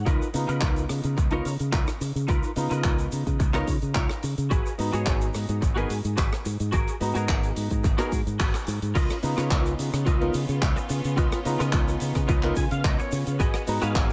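A straight 4/4 nu-disco groove at 108 BPM is driven by a punchy, layered electronic kick and a tight, dry funk kit of hi-hat, rim click, shaker, handclaps and crash, while a fingered bass with an envelope filter and tube saturation adds a bright, direct pulse under the sensual, groovy mood. A clean, hollow-body semi-hollow guitar plays a compressed picked riff through ensemble chorus and dub echo, with clean fills around 3.7 seconds, and a smooth vintage grand piano with long sustain accompanies over C#13 and G#m7 harmonies. After a band accent at 8.4 seconds, the drop arrives at 9.0 seconds, where a distant symphonic violin section enters in the background with intense sustained chords and sidechain pumping, all within an echo-heavy small-room mix cut from a longer piece.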